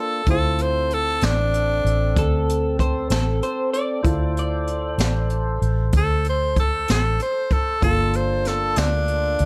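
In a slow, straight 12/8 at 64 BPM, this soulful, mournful D minor blues moves from Dm9 to Gm9, with a raspy, growling tenor saxophone up front carrying the melody in plate reverb. A grand piano sits in the background with short sustain and plate reverb, a fat tonewheel organ holds chords through a slow rotary speaker, and a dark, foam-muted electric bass and a distant, roomy brush kit with a boomy kick enter at 0.3 seconds. From 2.2 to 5.6 seconds, an electric guitar through a small old amp adds a slightly broken-up, lo-fi second line bathed in lush chorus and plate reverb.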